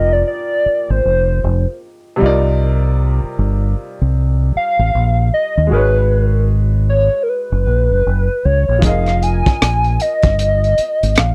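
Over a swung 4/4 groove at 77 BPM, this soulful, sultry neo-soul R&B excerpt sets a hollow, warbling square-wave lead carrying the melody with chorus and slapback echo above clear, woody upright piano chords and a deep, round dub bass played with the fingers, while a crunchy, saturated breakbeat kit of kick, hi-hat and rim click joins at 8.8 seconds, all in a dry, close 1970s-style studio sound.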